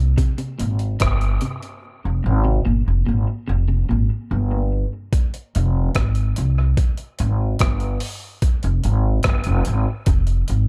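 Dry and echo-heavy, this meditative, hypnotic dub reggae excerpt sits on a single F minor chord at 73 BPM in a straight 4/4, tuned to A4 = 441 Hz. A woody, growly pizzicato upright bass with steel strings sits up front from the start, joined at 0.2 seconds by a gritty, compressed sampler-style breakbeat kit with a thumpy kick, hi-hat and rim click. A clean, picked electric guitar plays arpeggios drenched in dub echo until 4.1 seconds.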